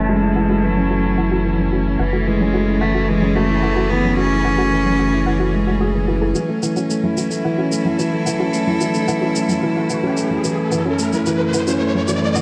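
Moving and melancholic, this piano and strings electronica cut from a longer piece moves at 110 BPM in F# minor, where a dark, mellow concert grand plays an up-front riff with delay while a rich, bowed string quartet holds sustained chords over F#m7 and Amaj7/F#. A clear, earthy cello carries the melody with light vibrato and delay until 5.8 s, a round analog bass sits low on F#1, and a soft pluck with chorus and delay spins arpeggios in the background, shaped by a filter sweep until 6.4 s. From 6.4 s a produced electronic shaker joins for the build-up, and an electronic riser rises from 8.7 s, all set in a moderate echo-chamber reverb with the top rolled off above 10.6 kHz.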